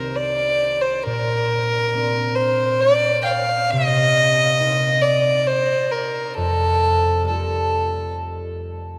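Celtic folk slow air in a free, rubato three-time, mournful and haunting, where a single bowed fiddle with a reedy gut-string tone sings the melody close and up front until 8.1 seconds, while a mellow, thumb-plucked concert harp rings beneath it through chords moving from Cm7 to Bbadd9 and Fadd9, the whole short passage cut from a longer piece and bathed in the long, wet reverb of a cathedral-like hall.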